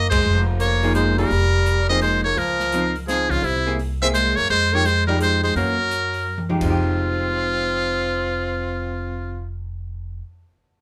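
Smoky and late-night, this short cut from a longer small-group swing and bop jazz piece moves at 170 BPM in a swung 3/4, in F minor, opening on a band accent at 0.1 seconds. A buzzy, close-miked trumpet with metal mute carries the melody up front with vibrato and scooped notes, joined by a distant, subtone tenor saxophone on a second line, while a growly, woody pizzicato upright bass anchors the bottom. A dark, clean hollow-body electric guitar comps from 0.8 seconds over chords such as Fm11, Dbmaj9 and Gb7, and an airy drum kit with dark cymbals and a boomy kick sits in the background, playing a fill before dropping out at 6.7 seconds, all in a moderate club reverb.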